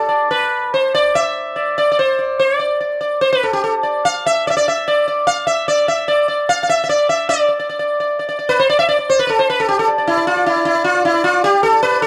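A solo sitar, plucked and up front with a buzzing, shimmering tone ringing over its sympathetic strings, opens this short cut from a longer Indian classical piece in raga Kafi on D, moving in 3/4 at around 142-155 BPM and speeding up throughout, its longing, solemn line ranging from E4 to F5 in a dry, close 1970s-style studio sound with a touch of small room reverb, shifting into a new section at 7.3 seconds.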